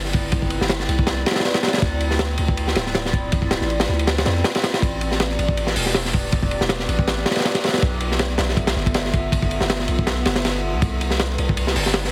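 Atmospheric and raw, this drum and bass cut with a jungle edge runs at 160 BPM in A minor, its 16ths carrying a light swing as the harmony drifts through lush extended chords from Cmaj9 to Dm9, Am11 and G13. A crunchy, saturated breakbeat kit sits up front with a punchy kick, a high-tuned snare and dark cymbals under a rolled-off top, while a long, deep 808-style bass with a fast attack holds down the low end. Behind them, a warbly, nostalgic tape-like pad with a slow attack, detuned sub-octave layers, chorus and vintage 12-bit sampler grit sustains chords, all framed by light reverb and a heavily compressed radio sound.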